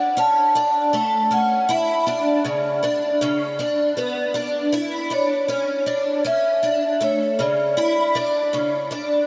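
In straight 4/4 at 79 BPM, this dream pop excerpt drifts with an ethereal, floating mood across its 9.3 seconds, cut from a longer piece. A picked twelve-string acoustic guitar plays arpeggios throughout, its bright, boxy parlour tone shimmering with octave doubling and an occasional finger squeak, sitting up front with ensemble chorus and delay. Above it, a vibraphone played with soft mallets and the motor off carries the melody between C#5 and A5, mellow and ringing, set forward in the mids with its own delay. The harmony moves from Dmaj7 to E5 at 1.7 seconds and settles on A at 4.7 seconds. A huge, wet ambient reverb with a long 6.9-second tail surrounds the whole, and the top end is rolled off, giving the sound a soft, hazy glow.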